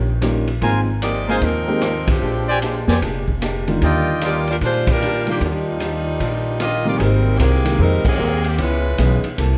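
A dark, clean hollow-body archtop guitar in the background and a woody pizzicato upright bass open this energetic big band swing excerpt at 151 BPM in Eb major, soon joined by a warm, natural-sounding baby grand piano and a distant, roomy drum kit with a punchy kick, as a brilliant trumpet section with light vibrato fires stabs from 0.6 to 4.4 seconds and a tight, bright saxophone section carries the melody from 1.0 seconds, all set in light reverb and punctuated by full-band accents.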